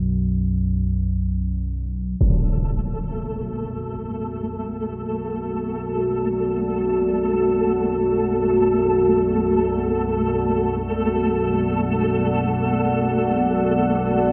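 Dark ambient drone in free time, desolate and cavernous, where a nasal, evolving analog drone with pulse-width modulation and chorus sounds from the start under a filter sweep before a huge, dark impact at 2.2 seconds, after which a grainy, flickering granular texture enters at 2.4 seconds and a deep, moody analog pad with sub octave, chorus and phaser brings sustained chords at 3.2 seconds, all suspended in a vast, echoing reverb.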